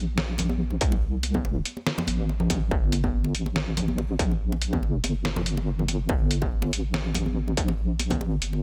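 Dry and close, this brooding, meditative deep dubstep fragment, cut from a longer piece, rides a half-time swing on a dark, detuned wobble bass thickened with chorus, a distorted, layered electronic kick that enters at 0.8 seconds, a gritty, pitched-down sampler-style kit of hi-hat and snare, and ringing, high-tuned congas played with hard hands and trailed by dub echo.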